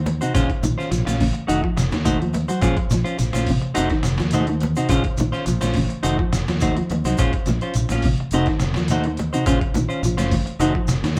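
A mellow, dark guitar arpeggio and a round, fingered electric bass open this hypnotic, funky afrobeat excerpt in Bb minor at 105 BPM, joined at 0.1 s by up-front clean guitar stabs with spring reverb, a gritty, pitched-down sampler-style drum kit with a thumpy kick and overdrive, ringing high-tuned congas in the background and a grainy shekere, all cycling between Bbm9 and F7b9 in a small room.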